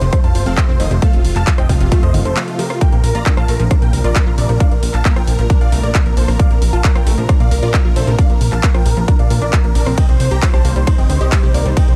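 A punchy, overdriven electronic kick sits up front in this soaring uplifting trance excerpt alongside an overdriven dance kit of handclaps, hi-hat, ride cymbal and rim click, with a brief break between 2.4 and 2.8 seconds. A huge, euphoric supersaw lead, bright and detuned with phaser and digital delay, carries the melody, while a boxy grand piano with audible action noise adds a second line in the background and a lush unison pluck spins arpeggios behind them, both with delay. A funky, plucky analog bass anchors the pumping sidechained mix as the chords move from F to Bbadd9 and on to Cm, all within a dark digital ambience.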